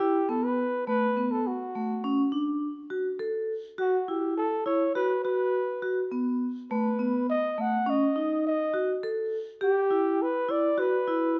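A recital hall's wet reverb surrounds this short contemporary instrumental passage in 5/4 at 103 BPM, its hypnotic, restless mood moving from E minor through D, B5 and B7 and back to E minor. Up front, a vibraphone struck with medium hard mallets rings out metallic, dark arpeggios. Beside it, a solo flugelhorn carries the jazz-style melody with a breathy, mellow tone, soft attacks and light vibrato.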